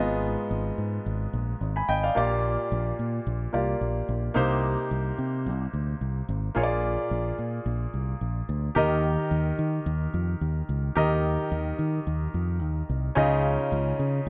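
Set at 109 BPM in 4/4 with a light 16th-note swing, this 1980s-style pop excerpt moves with an easy, buoyant lilt and an uplifting, nostalgic mood. A clear baby grand piano carries the accompaniment throughout, its polished, present tone sitting up front across a range from Ab2 to Cb6. Beside it, a fingered electric bass holds down the low end from Ab1 to Eb3, sounding punchy, direct and amped. The harmony opens on Abm6 and passes through Bb6, Cm7 and Bb7 before settling into Eb mixolydian at 8.8 seconds, where an Eb chord takes hold and a Dbadd9 arrives at 13.2 seconds. Both parts play the full length, framed by light reverb and a small-room ambience that keeps the sound intimate and close.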